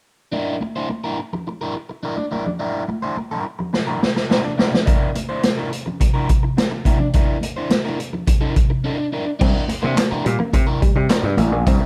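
A raw garage drum kit, boomy in the kick and saturated with a rolled-off top, sits up front in this playful, gritty funk piece at 106 BPM in C mixolydian, entering with a fill at 3.7 s over a crunchy, phased, overdriven guitar picking a rootless C9 and high-tuned congas ringing softly in the background; after a short break, a punchy, bright slap bass arrives at 9.4 s alongside a lo-fi, slightly broken-up guitar riff through a small old amp, followed at 10.0 s by a barely audible group handclap, set in light reverb within a dark production.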